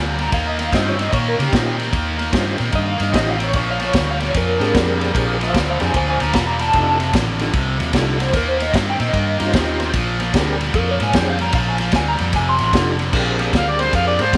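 An electric blues shuffle with a laid-back, rollicking feel, where a slightly broken-up, lo-fi guitar with tremolo carries a clean solo over a bright, overdriven riff guitar, round foam-muted bass, a vintage kit with dark cymbals and a punchy kick, and a full tonewheel organ turning on a slow rotary speaker, before a mellow harmonica with scooped notes steps up front at 13.6 seconds as this short cut from a longer piece closes in a small, echoing room.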